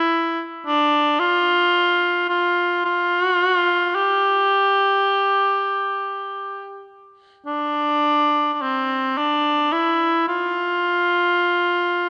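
Solemn and mournful, this brief passage of Caucasian folk lament unfolds in a slow, free-flowing triple metre that breathes with rubato. A lone cor anglais carries the whole of it from 0.0 to 12.1 seconds, singing in a narrow range between C4 and G4 with a smooth top and a classical poise. Placed up front, the instrument's warm voice sits within a moderate church reverb whose 2.9-second tail lends the lament a sense of sacred space. The production is dark overall, deepening the grief of the line. The melody moves into a second section at 7.5 seconds, and the passage is cut from a longer piece.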